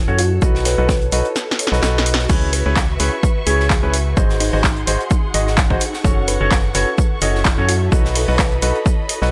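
A hollow, organ-like FM bass pumps beneath a faint, blurred granular pad as this bittersweet, soulful piano house excerpt opens at 128 BPM with a light swing, and a bright baby grand riff with long sustain, filtered and delayed, arrives over chords moving from B7 through C#m7, G#7 and F#m. A round, tine-like synth pluck carries a gentle chorused melody in the background, while a punchy, tape-warm analog drum machine with claps and crash, an airy acoustic fusion kit with a high-tuned snare and shaker, and an overdriven electronic kick drive the groove. The kick drops out for a drum fill from 1.4 to 2.3 seconds, after which a veiled, muted string section enters with lush vibrato chords, all set in a light studio reverb.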